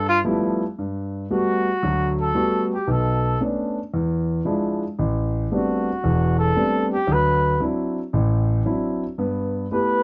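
A mellow trumpet with a soft attack carries the melody over an intimate, natural-sounding grand piano with audible action noise from the very start of this swinging, sophisticated jazz excerpt at 114 BPM in G major, its swung eighths moving through Gmaj9, Bm9, E7b9, Am11 and D9 before settling on G69, set in a dark, moderately ambient booth sound where the trumpet seems distant and roomy yet sits up front beside the piano.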